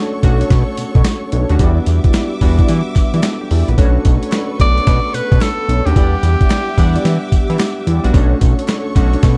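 This new jack swing R&B excerpt moves at 110 BPM in B minor with a punchy, slick swing, built on a gritty, pitched-down, sampler-style drum kit with a thumpy kick and high-tuned snare, and a fat, detuned sawtooth bass, both up front. Round analog keys with chorus, lush bowed strings and dark, brassy synth stabs with chorus and delay fill out the Bm9 to Em7 vamp, while very quiet, crisp group handclaps enter at 1.1 seconds. A clear tenor saxophone with light vibrato takes a brief pop-style solo from 4.6 to 7.5 seconds, all set in a dark, warm digital ambience.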